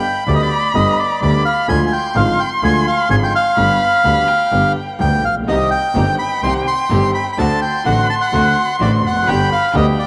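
A reedy bandoneon sits up front and carries the melody in this dramatic, sultry tango, a short passage cut from a longer piece that moves at 127 BPM in 4/4 with a rubato feel. Alongside it, a bowed solo violin plays a second line with vibrato, portamento and a soft attack, its tone touched by tape echo. A concert grand piano supplies intimate, vintage-sounding accompaniment with deep bass and audible action noise. Underneath, a close, bowed double bass adds a rich, expressive low end with vibrato and gliding portamento. At 5.5 s a very quiet studio string section enters with smooth-topped, warm stabs. The harmony moves from G through Ddim and back to G, then on to Cm and D7 before settling on G, all bathed in a wet spring reverb.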